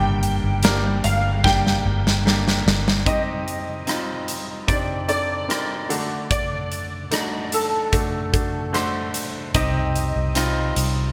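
Melancholic and longing, this excerpt from a slow pop ballad at 74 BPM in 4/4 sets a clear, polished concert grand piano carrying the melody with an ensemble chorus effect, while a second piano part with deep bass and short sustain plays the accompaniment over chords moving from Gm through Cmadd9 and D to Cm. A huge arena drum kit with gated reverb, a punchy kick and a medium-tuned snare enters at 0.2 seconds, playing hi-hat and rim click and delivering a drum fill from 1.4 seconds, while a dark, round, foam-muted fingered electric bass sits up front, dropping out after 3.0 seconds and returning at 9.5 seconds. A lush hall reverb and bright 1980s-style digital production give the whole a glossy, spacious sheen.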